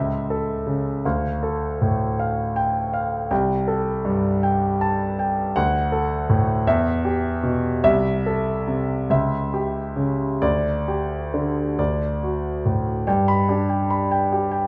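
A polished, up-front grand piano plays alone throughout this short, warm fragment of a lyrical romantic character piece in 6/8 with free rubato, its present tone ringing through a moderate recital-hall reverb as the harmony moves from A/C# and Dm through Am7/C, Em and C#dim before settling on G at 13.1 seconds, where a new section begins.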